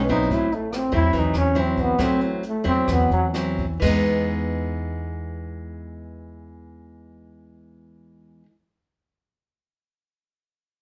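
A clear, punchy trombone with light vibrato and a vintage jazz character takes the solo up front in this breezy, sunny bossa nova fragment, cut from a longer piece, as the music slows down from 0.3 s over an Am6 chord. Beside it, a fingerpicked nylon-string guitar sounds full-bodied and freshly strung, with audible finger squeak and a classical touch. A pizzicato upright bass adds a woody, warm low end, while a brushed jazz kit brings dark cymbals, a boomy kick, hi-hat and rim clicks from a natural small room. The trombone stops at 3.3 s and the drums shortly after, leaving guitar and bass to carry the second section on an Emaj7 to the close. The ensemble sits in a wet studio reverb, heard from further back in the room.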